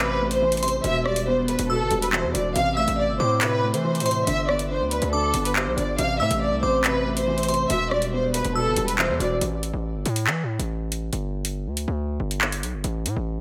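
A lush, vibrato-rich violin section carries the melody over a soft, felt-muted upright piano and a heavy, distorted 808-style bass in this dark, tense half-time drill piece, with a glassy synth bell adding a second line from 0.6 seconds and an up-front electronic kit of metallic hi-hats, handclaps and rim clicks, the mix dreamy and soaked in plate reverb until strings and piano stop at 9.4 seconds, leaving bass and drums for the break.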